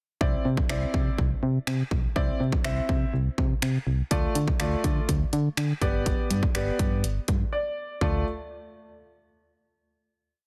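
This dance-pop piece moves at 123 BPM in a straight 4/4, sitting in D dorian with a confident, energetic drive. A house drum kit of finger snaps, hi-hat, kick drum and toms carries a syncopated pop beat, its punchy kick and overdriven, layered electronic sound placed up front with the character of a large room. Beneath it, a solid FM bass plays octave lines from G1 to D3, round and dark with a fast attack and a digital tone, pumping under sidechain compression. A clear concert grand piano supplies pushed chords in drop2 voicings between A3 and E5, intimate and natural with audible action noise and short sustain, also pumping with the sidechain. The harmony runs from Cadd9 to Dm at 4.1 seconds and G at 5.8 seconds, and a piano fill leads into a brief break at 7.5 seconds before the piece settles on a final Dm chord. The mix is dry, dense and heavily limited in a modern style.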